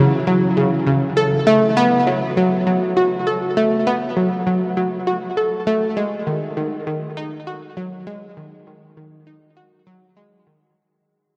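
Mysterious and hypnotic, this ambient excerpt at 100 BPM features a lone analog pluck, round and detuned with a wave-folded, filtered edge, ringing through chorus and tape echo from 0.0 to 10.6 seconds inside a huge, wet reverb and the warbling drift of worn cassette tape, fading out from 1.2 seconds onward.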